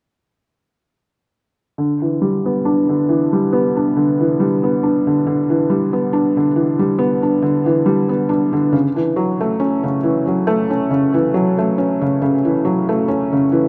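A lightly swung 4/4 pulse at 69 BPM carries this brooding, hypnotic trip hop fragment in E dorian, where a felt-muted upright piano, intimate and up front with a thin, mellow felt tone, plays arpeggios through a low-pass filter sweep and tape echo from 1.8 to 13.7 seconds, bathed in lush hall reverb within a rough home-demo mix cut from a longer piece.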